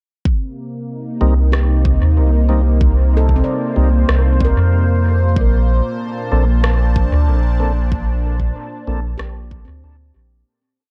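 An echo-heavy digital ambience, its top capped at 11.0 kHz, frames this spacious, deep ambient dub piece at 94 BPM in C dorian, where a warm, detuned sawtooth pad with chorus and a moving notch shifts slowly from Cm7 to Bbmaj9 over a soft, layered electronic kick and a round, up-front sub bass line, while a sparse, overdriven rim click re-recorded in a large room, clean tonewheel organ stabs with chorus vibrato and dub echo moved in parallel in the background, and a ringing, echoing nitrided-steel handpan played with fingertips in four slow loops of unequal length drifting against each other fill the space until the fade-out from 7.1 s to 10.5 s.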